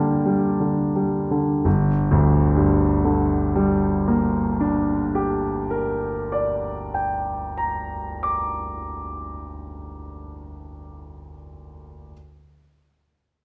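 A clear, open concert grand sits up front in a reverberant recital hall, its deep bass ringing into the room's tail. This wistful, mournful romantic nocturne for solo piano moves in 12/8 with free rubato, spanning from low G1 up to D6. The opening phrase slows as it settles into the first 1.6 seconds before a longer passage unfolds, and the piece is cut from a longer work at 12.1 seconds.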